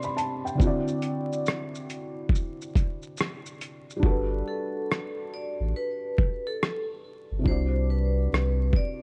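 A soft, intimate felt-muted upright piano with audible action noise and a cassette-tape tint opens this nostalgic, cosy lo-fi hip hop piece with a gritty, overdriven sampler-style kit of thumpy kick, rim click, hi-hat and shaker on a swung feel, before a round sine sub bass arrives at 4.0 seconds as the hi-hats drop out and a metallic, ringing hard-mallet vibraphone takes the melody from 4.5 seconds, the whole set in a dark production with vinyl crackle.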